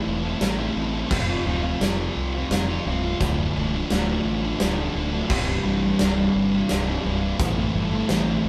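A wet, roomy studio reverb surrounds a band playing live together in this hopeful, cinematic post-rock excerpt in C major, moving at 86 BPM in 3/4 through Am, F5, Dm and Csus2. A thick, double-tracked fuzz guitar sits up front with a distorted, picked riff, while a growly, overdriven fingered electric bass enters at 0.1 seconds underneath it. At 0.4 seconds a big acoustic rock kit joins with a punchy kick, medium-tuned snare, hi-hat and crash, its mid-forward tone rolled off at the top.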